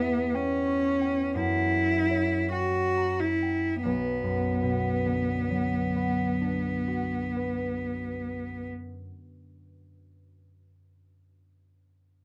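In a moderate studio ambience, this elegiac, solemn excerpt of a romantic classical duo in B minor moves at a rubato 42-63 BPM in 4/4, slowing through its opening as the harmony passes from C#dim/E and F#7b9 to Bm at 3.9 seconds, with an intense, bowed cello carrying the melody up front in a clear, vibrato-rich tone with a smooth top until 8.7 seconds, while an up-front, mellow, thumb-plucked concert harp lets its accompaniment ring until 10.1 seconds.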